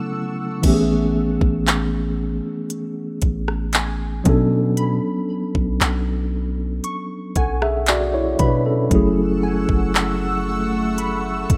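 Dreamy and tender, this short contemporary R&B passage, cut from a longer piece, moves at an unhurried straight pace in four. A mellow tine electric piano carries the accompaniment up front from the start, its clean tone colored as if heard through built-in speakers, while a glassy FM pad with ensemble chorus and its own reverb holds ethereal sustained chords briefly at the opening. At 0.6 seconds a produced trap kit arrives with a knocking kick, crisp hats, handclaps, rim clicks and a crash, joined by a deep, sine-like 808-style bass whose long notes strike quickly and then decay underneath. A quiet crystalline wavetable pluck adds a detuned, ring-modulated texture high above, with chorus, digital delay and a moving notch filter sweep. The harmony drifts from Amaj7 through Bm7 to F#m7, and the pad returns at 9.3 seconds, all within a rough home-demo mix set in digital ambience.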